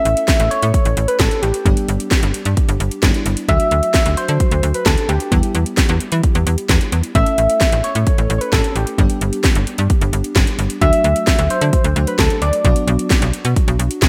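Driving yet melancholic, this synth-pop excerpt moves at 131 BPM in a straight 4/4, cut from a longer piece. A house drum kit sits up front with a punchy kick, cracking snare and metallic hi-hats bathed in gated reverb, while a snappy, slap-like FM bass with a metallic attack ranges from G1 to E3. An FM electric piano layered with a soft pad supplies lush, dreamy, warbling chords, its detuned, vintage tone thickened by chorus. Over this, a round, gentle, keys-like synth lead carries the melody between G4 and E5 from the start until 13.3 seconds, colored by chorus, phaser, tremolo and delay. The harmony cycles through A, G, Dadd9 and Em, then A, G, Dadd9 and Bm, all set in a moderate plate reverb with a bright 1980s-style digital sheen.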